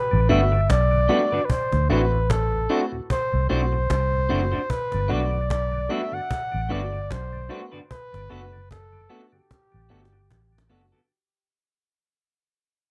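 A relaxed 75 BPM groove in 4/4, with a lightly swung sixteenth-note feel, carries this smooth, tender lovers rock reggae clip in G major, moving through Gmaj7, D7 and Gmaj9 as it fades out from the start. Up front, a flugelhorn with light vibrato sings a jazz-style solo melody through tape echo, over a dark, round, foam-muted electric bass, a barky tine electric piano and a piping tonewheel organ in the background; the piano and organ both carry slapback echo, and the organ turns slowly through its rotary speaker. Twangy, slightly broken-up guitar stabs from a small old amp and a snappy cajon played with hard hands fill out the dry, close 1970s-style sound, with the cajon taking a fill from 9.5 seconds.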